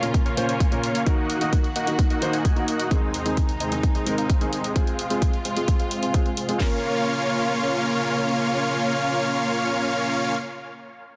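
Powerful and emotional, this short cut of festival progressive house moves at 130 BPM in a straight 4/4, set in Bb minor with chords stepping from Bbm through Ebm, Ab/Eb and Fm before returning to Bbm at 6.6 seconds. Up front, a huge, thick supersaw carries the riff from Ab3 to Ab5, its detuned sawtooth unison layered with a sub octave and a noise layer, bright and compressed with vibrato, as a filter sweep runs across it through the opening section alongside dub echo and sidechain pumping. Beneath it, a dark, mellow grand piano plays accompaniment with audible action noise and a short, vintage sustain, also pumping and echoing, while a clear, focused studio string section holds lush bowed chords from Eb2 to Gb4. A punchy house drum kit with a cracking snare and metallic hats sits up front with a layered electronic hi-hat, and both drop out between 6.6 and 6.7 seconds, leaving the synth, piano and strings for the closing section. 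Light reverb frames a dense, heavily limited modern master.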